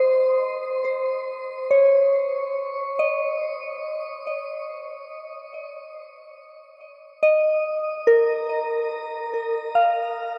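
At a straight 71 BPM in 4/4, this short ambient passage cut from a longer piece floats in a weightless, warm mood, tuned slightly flat to A4 = 437 Hz. A soft FM synth bell plays alone and up front throughout, its pure, gentle tone warbling with a vintage character through chorus, phaser and delay, each note striking quickly and then decaying between Bb4 and F5. Wet shimmer reverb with a 7.5-second tail surrounds it as the harmony moves from Cm to Dbsus2, rests on an unaccompanied stretch at 4.3 seconds, and settles on Ebsus2 at 7.6 seconds.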